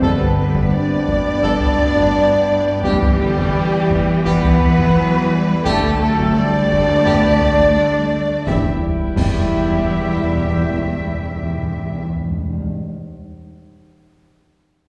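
Epic orchestral film score in E minor, heroic and dark, moving at 85 BPM in a straight 4/4 and cut from a longer piece. A shadowy, expressive violin section carries the melody while flutes with rolled-off highs and a second, smoother violin section add their own lines, and lush violas fill the middle. Horns, trombones and a mellow woodwind section hold the sustained chords, a distant, roomy trumpet adds stabs, and woody double basses join vibrato-rich cellos in the bass under chords that move from Gadd9 through Em and Dsus4. Compressed, saturated taiko drums struck with heavy sticks pound from the start until 9.8 seconds, joined by timpani on E and a huge sub drop. At 8.5 seconds an impact lands as concert snare, bass drum and bright clash cymbals hit a band accent. The whole orchestra sits back in a wet scoring-stage reverb.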